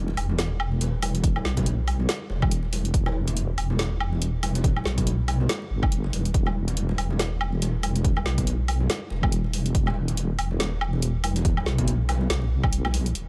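A half-time 4/4 groove at 141 BPM, swung at 57% on the sixteenths, drives this dark, cavernous deep dubstep drop in E minor, cut from a longer piece and tuned to A4 = 438 Hz. A deep, detuned wobble bass blending sawtooth and sine tones, compressed and treated with chorus, sits up front from the start. A layered electronic kit of woody snare, dusky hi-hats and woodblock runs alongside, a punchy electronic kick joins at 1.2 seconds, and distant, ringing congas played with soft hands drift through dub echo, all set in a digital ambience.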